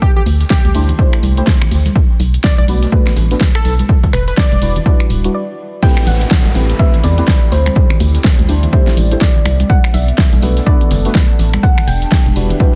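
Deep house with a hypnotic, swung groove, built on an overdriven, punchy electronic kick up front, a hollow organ-like FM bass with sidechain pumping, a fat-snared deep house kit with finger snaps and crash, bright background congas and a very quiet, dark cocktail kit of hi-hat, shaker and snare. A mellow, detuned unison lead carries the melody through digital delay until 5.1 seconds, while soft, wave-folded chord stabs drift through chorus, phaser and tape echo. In the break at 5.3 seconds, a gentle, round pluck takes over the melody, and at the drop at 5.8 seconds a background downlifter and a warbling, nostalgic lo-fi pad arrive in a dense, heavily limited small-room mix.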